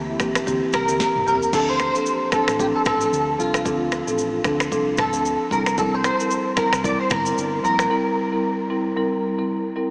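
A bright, twangy clean electric guitar carries the melody up front, its picked line between E4 and D5 colored by ensemble chorus and tape echo until it drops out at 8.7 seconds. This smooth, hypnotic afrobeats excerpt moves at 113 BPM in 4/4 with a swung sixteenth feel, sitting in D minor and tuned slightly below standard pitch. A woody marimba played with medium mallets on rosewood bars provides up-front accompaniment with a vintage, band-limited character, while a round, amped fingered electric bass holds the low end beneath it. The electronic, produced afro-pop drum kit comes in at 0.2 seconds with a deep kick, sharp snare, rim clicks, finger snaps, shaker, toms and crash, and a short fill leads from a C7 chord into Dm7, with the harmony returning to C7 later on. At 7.9 seconds the drums and bass stop for a break, leaving the marimba to ring out alone at the end, all bathed in a huge ambient reverb that gives the mix a dreamy, small-speaker feel.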